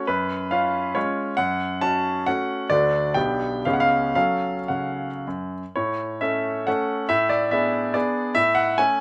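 A bright, up-front grand piano with brilliant, polished tone, long sustain and audible action noise plays alone through this wistful, capricious romantic triple-time dance in 3/4, its dotted rhythms pulled by rubato between 103 and 151 BPM as the music moves from F# minor into A major at 5.8 s, all set in light reverb that keeps the sound intimate and present.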